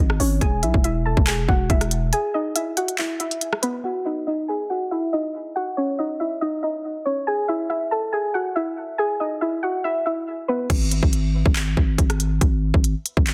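Brooding and eerie, this cut from a longer trap and hip hop piece moves with a half-time feel. A soft, round synth pluck carries the melody from the start, its dark tone built from blended waveforms with a noise layer and ring modulation, softened by chorus, a low-pass filter and delay. A growling, buzzy 808-style bass and a produced electronic trap kit with a hard-clipped kick, crisp hi-hats, handclaps, rim clicks and crash cymbal sit up front; the bass drops out for a break at 2.1 seconds while the drums carry on until 3.7 seconds. From 3.8 seconds the pluck carries on alone through a filter sweep, its Eadd9 harmony falling away before returning at 7.3 seconds. At 10.7 seconds the pluck stops as the bass and drums return, all set in light reverb and a dense, heavily limited modern master.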